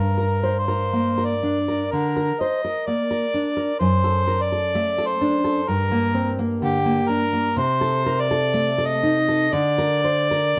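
The recording sits in a light reverb, with both instruments placed up front. It is a solemn, elegiac romantic duo in a rubato 4/4, cut from a longer piece. A warm harmonica carries the melody in a classical style, its smooth top shaded by a light vibrato, singing as the solo voice from 0.0 to 10.6 seconds. Beneath it, a fingerpicked nylon-string guitar gives acoustic accompaniment with a deep classical tone, and an audible finger squeak lends it an intimate, human texture. The harmony moves from Gm through D/F# and back to Gm, then darkens to Adim/C before arriving on Bbadd9/D at 9.5 seconds.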